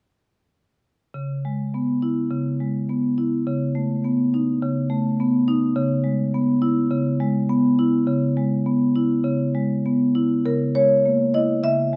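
Hypnotic and flowing, this contemporary classical piece for solo marimba unfolds in C# minor at 103 BPM in 4/4, though its rubato feel lets the pulse breathe freely. The marimba, played with medium mallets, carries the whole piece on its own from 1.1 seconds until the cut at 12.0 seconds, ranging from C#3 up to E5. Its tone is warm, with a vintage, band-limited character, and it sits up front under close, detailed microphones. The harmony moves from C#m7 to B9/C# and back. A brief second section at 10.5 seconds settles on C#m6. A moderate recital hall reverb surrounds the instrument, and the recording is taken from a longer piece.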